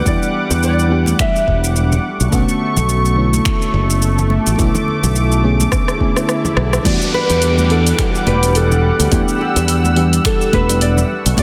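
A fingerpicked nylon-string guitar melody with delay opens this smooth sunset chillout excerpt over a round, dark FM electric piano and a thick, warbling detuned pad, soon joined by a punchy, up-front fingered electric bass, an overdriven deep house kit of finger snaps, shaker, hi-hat and rim clicks, a deep electronic kick and very quiet, thin-skinned congas, until a drum fill at 5.7 seconds and a background swell and downlifter at 6.0 seconds lead into the second part at 6.9 seconds, where the guitar returns, all set in a lush hall reverb with a dense, heavily limited master.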